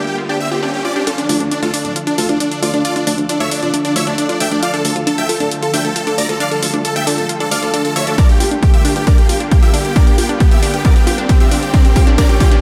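A straight 4/4 pulse at 135 BPM propels this bittersweet, driving uplifting trance passage in D minor, cut from a longer piece, where a huge, euphoric detuned supersaw lead carries the melody up front with sidechain pumping and digital delay over a lush, thick pad with chorus, a background riser and a bright unison pluck arpeggio under a filter sweep, while tape-warm analog hi-hats arrive at 1.1 s as the build-up begins, a round, mellow FM bass follows soon after, and a punchy electronic kick enters with a drum fill at 8.2 s, the whole mix sitting in a light reverb.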